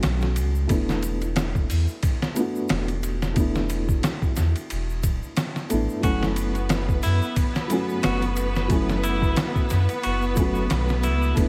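This brooding, dark trip hop opens at 90 BPM in F# minor with a swung 16th feel: a gritty, pitched-down sampler-style drum kit with a thumpy kick sits up front beside a deep, round dub sub bass with tube saturation, while a boxy, felt-muted upright piano with audible action noise plays accompaniment through tremolo and tape echo, and a close, dry egg shaker sits in the background. At 6.0 seconds a lush, biting symphonic string section enters with sustained chords, joined by a twangy, clean electric guitar picking arpeggios through tape echo. The harmony moves from F#m7 to E7sus4 and back to F#m7, in a dry, echo-heavy mix dusted with vinyl crackle.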